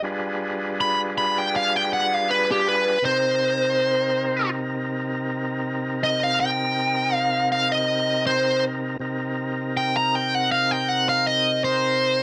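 A thick, gritty tonewheel organ opens this smoky, brooding blues fragment, its key click and slow rotary speaker adding a churning texture to the accompaniment. At 0.8 seconds a smooth, bright electric lead guitar enters with a picked, overdriven tone and carries the melody above the organ, soloing until 9.0 seconds. The harmony moves from a tense G7b9 into a dark Cm7 at 3.0 seconds, and the swung 4/4 feel gives the playing a lazy, unhurried lean. The guitar sits a little louder than the organ, though both parts stay up front. The sound is a dry, close 1970s-style studio recording touched with light reverb, and it shifts into a new section at 9.0 seconds before breaking off.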